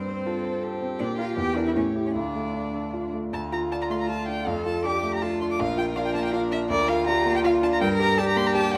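Restless and urgent, this excerpt from a quick classical-period movement for piano quartet moves in 3/4 at 161 BPM with a rubato feel, set in D minor and tuned to A4 = 438 Hz. A single bowed violin carries the melody from start to finish, singing with vibrato and portamento in an expressive, smooth-topped voice high in its range. Beneath it, a second violin adds a dark, woody line in the background, while a solo cello plays an intimate, close second line, bowed sul tasto with light vibrato, a soft attack and an airy tone. The concert grand piano sits up front with a clear, natural sound and deep bass, accompanying the strings across a broad range. The harmony moves from F/G through Bb, Edim and A7 to Dm, and a new passage begins at 3.3 seconds, passing through Dm/F and Bb before arriving on Gm at 7.8 seconds. A wet stone room reverb gives the quartet a resonant, enclosed space.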